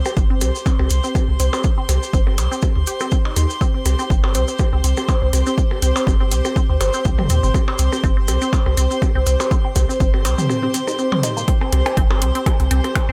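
A rich chamber string section opens this quirky, clinical minimal techno excerpt, its bowed ensemble texture carrying light vibrato and a smooth top while sidechain pumping makes it breathe with the beat. Almost at once a squelchy, resonant blip pluck sets up a riff, its detuned sawtooth and ring-modulated tone run through phaser and dub echo, alongside electronic percussion blips and toms that sound re-recorded in a large room with added delay. A deep sine sub bass with a pitch-drop attack and an overdriven, up-front electronic kick form the punchy foundation, soon joined by an analog drum machine supplying finger snaps and hi-hat with gritty overdrive. Grainy, compressed maracas add a saturated acoustic texture to the swung groove until the drop at 11.5 seconds, where they fall away while the remaining parts carry on under a light reverb.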